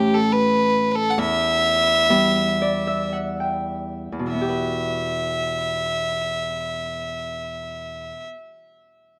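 Longing and mournful, this brief excerpt of a Celtic slow air in E dorian drifts in a rubato 3/4 between 48 and 75 BPM, its pace slowing through the opening 4.3 seconds as a single earthy, bowed fiddle carries the melody with light vibrato and a smooth top, while an up-front, mellow, fingerpicked Celtic harp rings beneath it, adding a fill from 2.1 to 4.3 seconds, all captured in a dry, close 1970s-style studio sound touched by light reverb.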